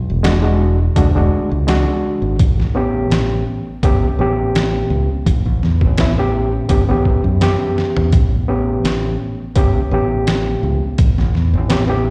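A straight-eighth soul blues groove at 84 BPM in 4/4 with a slight sixteenth-note swing, this swaggering, rollicking fragment in A mixolydian moves from E9 to A9 over fingered electric bass, warm and direct, and a pitched-down, compressed sampler-style trip hop kit with a thumpy kick, medium-tuned snare, hi-hat and toms, driven into overdrive. An overdriven reed electric piano, reedy and gritty through a combo amp with slapback echo, fills out the accompaniment, and all three parts sit up front. A drum fill at 7.8 seconds leads into a new section at 8.1 seconds, and the whole thing sounds like a live gig heard through the venue's PA, with light recital-hall reverb.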